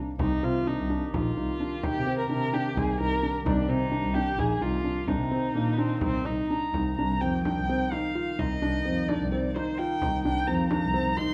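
Contemporary chamber music in a hypnotic, urgent 7/8 at 257 eighth-note beats per minute in C minor, where a felt-muted upright piano with audible action noise plays intimate arpeggios over a mellow woodwind section's sustained chords in the background, a bowed double bass with vibrato and portamento holds the bass line up front, a deep frame drum sounds from a small room, a soft-attack sul tasto viola floats a second line, and from 1.1 seconds a dark, woody violin carries the melody, all in light reverb.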